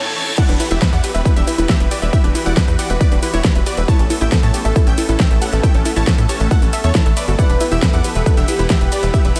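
Uplifting trance with an emotional, bittersweet mood, this excerpt opens on a huge, euphoric supersaw lead before the drop lands at 0.4 seconds, bringing a punchy, up-front kick, a big-room kit with a huge snare and metallic hats, and a tight, driving sequencer bass. Detuned unison plucks carry a second line and cassette-tinged arpeggios, while a filtered supersaw swell holds evolving chords with lush chorus in the background, and the plucks, the swell, the bass and the lead all breathe with sidechain pumping. At 7.4 seconds a velvety synth lead with vibrato joins as a further line, all under light reverb.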